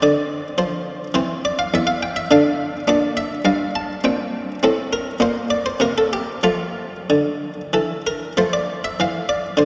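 Classical baroque-style suite movement in F major and flowing, dance-like 3/4 at 92-107 BPM with a rubato feel, this excerpt features a solo buff-stop harpsichord in Flemish style, its muted, lute-like plucked tone sitting dry and up front across a range from E2 to A5, set in a wet cathedral reverb with a 4.6-second decay, moving through chords such as C/E, Gm/Bb and Am before settling on F at 6.5 seconds and passing into a new section at 8.4 seconds.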